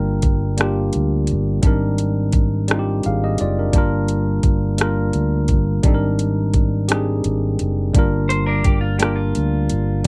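A bright, clean tine electric piano sits up front through its built-in speakers, rocking between Gm7 and Abmaj9#11 in this sultry, yearning slow six-eight R&B excerpt at 57 BPM, over a round, dark fingered electric bass, an electronic drum kit with a knocking kick, metallic hi-hats and rim clicks, and a picked, compressed clean electric guitar that enters at 8.3 seconds, all in a dry, dark production.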